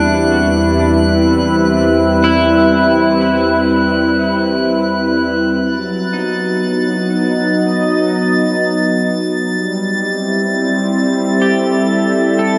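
In a slow, straight 4/4, this serene, spacious ambient fragment from a longer piece rests on a sawtooth analog pad of smooth, warbling detuned chords with a vintage tint. A clean, bright semi-hollow electric guitar picks arpeggios through analog chorus and tape echo, fading in from 5.6 seconds as the harmony moves from Cmaj7/E to B and then C6. A drifting glass-harmonics texture floats high above, all sine-like overtones, and the whole sits in a huge, wet reverb.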